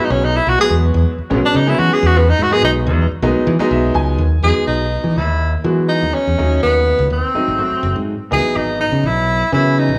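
Set in a moderate small-room reverb, this slick, soaring cut of electric jazz fusion moves at 124 BPM in a straight 4/4 in E major, with harmonies that open on Emaj9 and later pass through D#m7b5 and G#7b9 to C#m11. A clear tenor saxophone carries the melody, sounding roomy and slightly distant yet up front, with light vibrato, scooped notes, plate reverb and analog delay, and it solos from the start until 4.4 seconds. A brilliant, open baby grand piano accompanies throughout and adds a fill from 3.5 seconds, while a bright, direct fingered electric bass sits up front underneath.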